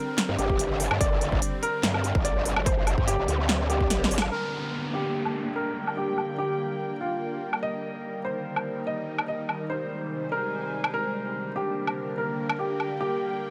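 A moderate, lush hall reverb surrounds this menacing, chaotic fragment of heavy wobble dubstep in a half-time feel. It opens on the drop, where a growling, saturated bass wobbles through a formant filter with chorus and overdrive, sitting up front beside a punchy, overdriven electronic kick. A layered big-room kit adds a punchy snare, crisp hats, handclaps, woodblock and crash, with low-pass filtering on its hats, snare, percussion and cymbals. Above them a dark, worn grand piano plays an intimate melody through delay, its action noise audible, while an evolving, detuned wavetable pad morphs through sustained chords with phaser and sidechain pumping. The kick falls away as a drum fill and band accent close the drop, and at 4.3 seconds the bass stops as an electronic downlifter falls and a breathy, warbling vintage pad with chorus joins. Over the remaining passage the drums carry a filter sweep as the chords shift from G minor through E-flat and A-flat back to G minor.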